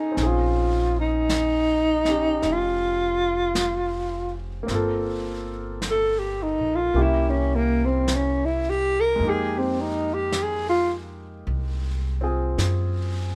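Jazz ballad in F minor at a slow, swung 53 BPM, wistful and melancholic, where a breathy, whispered alto saxophone with vibrato and scooped notes carries the melody up front until 10.9 s over a clear grand piano with audible action noise and long sustain, woody pizzicato upright bass and a vintage brush kit with a rolled-off top, moving through Bbm11, Gm11, C7b9 and Fm11 in light reverb in this short cut from a longer piece.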